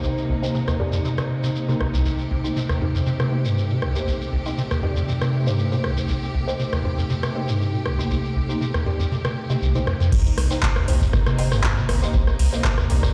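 Trippy and raw, this acid house excerpt at 119 BPM in C dorian rests on a Cm7 chord, with clear, lush symphonic strings holding sustained chords under a squelchy, resonant square-wave acid bass riff with overdrive and delay, muted, detuned dub chord stabs treated with phaser, a grainy, close shekere and a moody, evolving ambient pad that stops at 10.2 seconds, while a booming analog drum machine with metallic hats, handclaps, rim clicks and crash enters at 0.7 seconds before the drop at 10.1 seconds brings in a round, dark analog bass and a deep, tape-flavoured electronic kick, all of it ringing through a large, bare-room reverb with a pumping sidechain feel on the strings, acid bass, pad and round bass.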